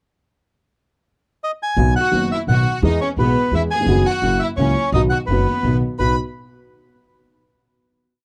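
A reedy, up-front bandoneon carries this short, elegant and passionate tango waltz, entering at 1.4 seconds with a motif-based melody built from song-like phrases. In 3/4 at 171 BPM with a rubato feel, the piece sits in B major and moves through B, E, B/F# and F#7 before settling back on B for a final chord. A dark, worn grand piano and a woody, thumpy pizzicato upright bass on gut strings come in together at 1.8 seconds, both marking the waltz time with an accent on the first beat. From 2.0 seconds, a bright, biting bowed violin section adds an intense second line in octave doubling, colored by light vibrato. The sound is that of a dry, close 1970s-style studio session with a small room reverb, giving the boxy, mellow piano and the full bandoneon an intimate presence.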